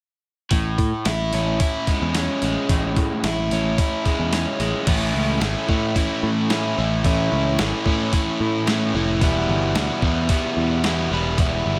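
An overdriven, double-tracked electric guitar sits up front in this short indie rock excerpt, playing a compressed, picked riff that sets a carefree yet wistful mood at an easygoing mid-tempo in straight 4/4. Beneath it, a picked electric bass with a warm, direct-and-amped tone holds down the low end. A sampler-style drum kit gives the groove a gritty, pitched-down character, with a thumpy kick, a medium-tuned snare, hi-hat and crash cymbal. The harmony opens on an Amaj7 from 0.5 seconds, settles onto a plain A chord as a new section begins at 4.9 seconds, and turns to E minor at 9.2 seconds. A light reverb gives the whole mix a touch of space.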